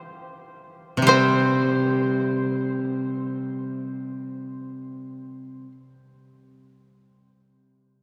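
Calm and austere, this fragment of Japanese chamber music in free time opens with a bright, woody koto alone in the background, picking out a high second line from 0.0 seconds. At 1.0 seconds a second koto, played up front with fingerpicks, adds a warm, dry accompaniment lower in the range, and at 1.1 seconds a buzzing, percussive fretless shamisen enters with the plectrum-plucked melody. The whole ensemble sits in a vast, echoing cathedral-like space whose long reverberation hangs in the air.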